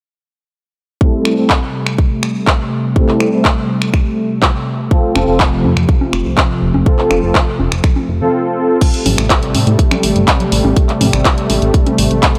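Progressive house with a dreamy, driving mood, this excerpt opens at 1.0 s with a warbling, vintage analog pad holding detuned sustained chords under chorus and a filter sweep, while a smooth, soft supersaw plays phased, delayed stabs through a low-pass filter until 8.8 s, both pumping with the sidechain. A punchy, up-front electronic kick and a house kit of bright hi-hats, handclaps, finger snaps and crash cymbal drive the groove. At 5.2 s a dark, funky plucky analog bass with a fast-attack filter pluck arrives alongside tape-warm congas set in the background, all lightly touched by reverb as the harmony moves from Am7 to F and back.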